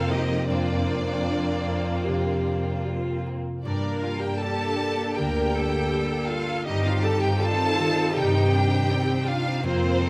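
Rubato and unevenly paced at about 79 BPM in 4/4, this sorrowful, moving cinematic excerpt unfolds over Fsus4, Bbadd9/F, Gm and Cmadd9/G. A rich, lush violin section carries the expressive melody with vibrato, while a soft-edged second violin line glides with portamento in the background, smooth violas and intense cellos fill the middle, and a warm double bass section anchors the bottom. A distant, dark French horn section holds sustained chords beneath bright, ringing arpeggios from a fingerpicked concert harp, all set in moderate scoring stage reverb.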